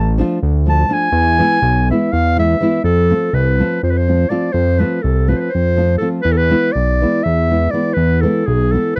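Restless and virtuosic, this brief excerpt of Balkan wedding-band folk music moves in a brisk 7/8 with a straight feel. A clarinet carries the melody with a warm, classical tone and a smooth top, taking a solo through the opening section until 2.8 seconds. Beneath it, a fat analog bass with a thick, detuned sawtooth sound, a fast attack and a sustained quality sits low in the register. A nylon-string guitar, thumb-plucked in a classical manner, supplies acoustic accompaniment from 0.2 seconds. The harmony moves from D minor to E, then to F as the second section begins, returning to E at 6.2 seconds. All three parts sit up front in a dry, close studio sound with a 1970s character and little reverb.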